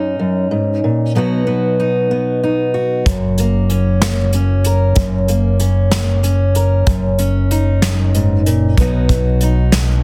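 A fingerpicked steel-string acoustic guitar opens this short indie folk excerpt alone, its dark tone marked by audible finger squeak as it moves through D#m7/F# and B in F# major. The feel is a straight 6/8 at 63 BPM counted in dotted quarters, and the mood is nostalgic yet uplifting. At 3.1 seconds the arrangement builds as a fingered electric bass and a soft brush drum kit enter together on an F# chord. The bass is round and amped, sitting low and up front, while the brushed kit offers a tight kick, a medium-tuned snare and hi-hat in a studio-room sound. The harmony returns to D#m7/F# and then B near the close, all set in light reverb within a dense, heavily limited modern master.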